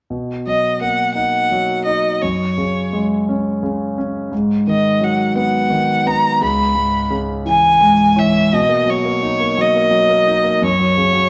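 A six-eight pop ballad in B major, this romantic, swaying excerpt moves at a slow 57 beats per minute, cut from a longer piece. A clear concert grand piano carries the accompaniment from the first moment, sitting up front with deep bass, long sustain and an intimate, polished tone where the noise of its action can be heard. At 0.5 seconds a single bowed violin takes the melody in its upper register, its sound rich, focused and slightly boxy, shaded with vibrato and placed just as close as the piano, a touch louder. The harmony moves through Bmaj7, F#sus2, G#m7 and C#m7 before returning to Bmaj7, and the piano plays a brief fill at 7.5 seconds that leads into a new section at 8.5 seconds. The two players sound as if they share one stone room, whose reverb gives the performance a lingering, resonant glow.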